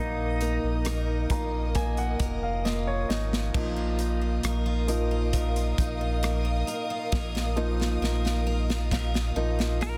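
This emotional, longing pop ballad opens on a sustained chord from a lush, woody string section, a clear baby grand piano, a brightly picked steel-string acoustic guitar with finger squeak, and a deep, up-front sub bass, while a twangy, clean electric guitar states a short melody that stops at 1.7 seconds. A polished acoustic drum kit with a punchy kick and airy room sound joins at 0.4 seconds, and the piano's fill leads into a solo from 3.5 seconds, with the drums adding fills along the way. The electric guitar returns briefly at the close of this dense, heavily limited modern mix.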